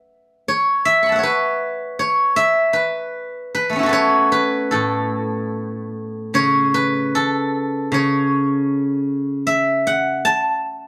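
Elegant and pastoral, this short cut from a longer Chinese traditional piece features a solo steel-string zither in the A gong mode, moving at about 77 BPM in 4/4 with a free, rubato feel and uneven beats. Played with fingerpicks, the zither sits up front with a bright, silvery, ringing tone that spans from A2 up to C#6. A moderate studio ambience surrounds it as the music shifts into a new section at 6.4 seconds, running until 10.9 seconds.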